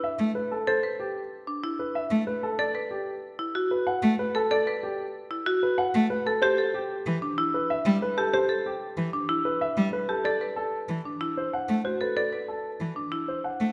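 A smooth, vintage grand piano carries the melody up front in this meditative yet urgent minimalist classical pattern piece, set at 188 BPM in 6/4 with a straight feel in A dorian. A single bowed cello adds a rich, even accompaniment with vibrato from 0.2 seconds, while a woody, percussive marimba played with hard mallets on rosewood bars spins band-limited arpeggios from 0.7 seconds. The harmony moves through Asus2, Esus4, a rootless Cmaj9 and Dsus2, all set in a moderate scoring-stage reverb in this excerpt from a longer work.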